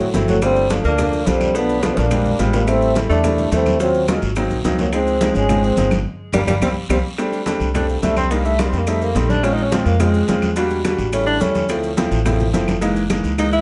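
A breathy, distant trombone carries the melody over a smooth-topped tenor saxophone line with tape echo, a bright, up-front upright piano, dark pizzicato upright bass, and a background of ringing congas, soft high-tuned bongos, woody claves, raspy guiro and grainy maracas in this sunny, sophisticated Afro-Cuban jazz excerpt; after drum fills and a band accent, the trombone drops out at 7.0 seconds and the saxophone takes a solo from 7.2 seconds, all heard from further back in a moderately reverberant room.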